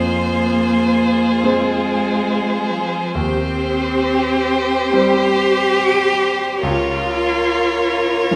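Bathed in the wet reverb of a recital hall, this melancholic, elegiac fragment of a slow romantic piano-quintet movement unfolds with rubato, as a rich-toned first violin sings the melody with vibrato and portamento over an expressive cello line placed up front, a warm second violin with a soft attack, a distant viola in the background, and a clear, smooth, vintage-sounding grand piano accompaniment with short sustain.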